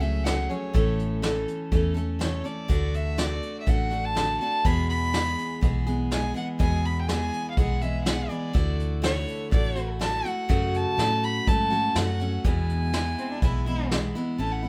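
Heartfelt and sunny, this honky-tonk and classic country passage, cut from a longer piece, moves at 123 BPM in a straight 4/4. A single bowed violin sits up front with the melody, its reedy gut-string tone and light vibrato giving it a period style, while a picked dreadnought acoustic guitar, bright and full-bodied, is also up front with the accompaniment. Underneath, a dark, round, foam-muted electric bass played with the fingers has an amped edge, and a distant, roomy brush kit in a small room adds a fat snare, a punchy kick and hi-hat with a rolled-off top. A second bowed fiddle, biting and intense yet set farther back, slips in briefly at 9.0 seconds and again at 13.2 seconds. The harmony moves from F#madd9 through A, D and E, then Dadd9, F#m and back to E, all set in a light reverb.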